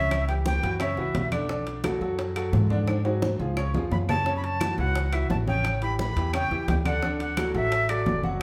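A sunny, joyful salsa passage opens with an airy jazz flute, its vibrato and crisp, chiffy attack heard from a distance yet up front, over a bright, vintage grand piano with long sustain and a dark, thumpy pizzicato upright bass on gut strings. The flute drops out at 1.3 seconds and returns at 3.9, during a drum fill that runs from 2.9 to 4.3, while thick-skinned congas, round low-tuned bongos, ringing metal-shell timbales and woody claves sit in the background. The whole band plays live in one room, bathed in a wet studio reverb, and the clip is cut from a longer piece.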